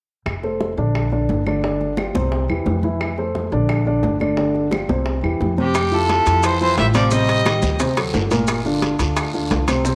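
Bathed in a moderate echo-chamber reverb, this lively, danceable Afro-Cuban jazz excerpt opens with woody pizzicato upright bass and background percussion (thin-skinned, high-tuned congas, tight bongos and distant claves), joined a moment later by a dark, mellow baby grand piano up front, its action noise audible. At 5.6 seconds a rich, nasal fiddle takes the melody up front, shadowed by a whispered, breathy baritone saxophone line with light vibrato and scooped notes. From 5.7 seconds the percussion fills out with ringing metal-shell timbales, a raspy, saturated guiro and grainy maracas.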